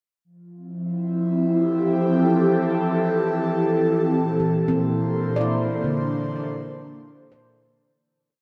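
A breathy, detuned synth pad with chorus and phaser opens this luminous, peaceful ambient piece at 62 BPM in F major, holding Fmaj9 then Bbmaj7 under a huge, wet reverb while a mellow analog drone enters at 2.5 seconds in the background and a ringing, meditative handpan drifts in at 4.4 seconds with tape-echoed arpeggios in unequal loops, the whole short piece fading out from 4.1 seconds.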